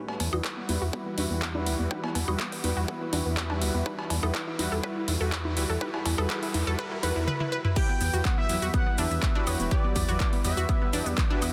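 A dense, heavily limited modern master with light digital reverb frames this dreamy, expansive progressive house excerpt in straight 4/4, built over a single Emadd9 chord. Through a build-up to 7.8 seconds, filter sweeps run on a round, chorused analog pluck playing arpeggios and on a smooth, detuned supersaw playing stabs. Both pump with sidechain and delay over a very quiet, lush pad holding sustained chords, a deep, rumbling detuned saw bass, and a punchy overdriven kick up front. A layered big-room kit with metallic hats, handclaps, shaker, toms, woodblock and crash joins them, along with overdriven cowbell and congas set back in a large room, while a faint riser and swell arrive at 4.0 seconds and a drum fill leads into the drop. At the drop at 7.8 seconds an expressive, dark synth lead with chorus, vibrato and tape echo takes the melody.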